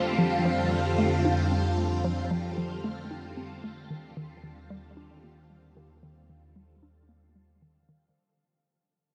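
Ambient, sequencer-driven space music at 113 BPM in a straight 4/4, this short excerpt cut from a longer piece feels mysterious and cosmic, moving from an F chord to Eb at 3.9 seconds. A phased string machine holds sustained chords throughout, its bright, swirling sawtooth tone set up front with ensemble chorus, phaser and shimmer reverb. Alongside it, a hollow square-wave pluck plays a bouncy, warbling riff with a detuned, mellow character, a noise layer, chorus and delay. A fat, thick analog bass anchors the low end with a detuned sawtooth sound. A filter sweep moves across the synth arpeggio sound while the whole passage fades out over its 8.2 seconds, all bathed in a huge, wet ambient reverb and the vintage color of cassette tape.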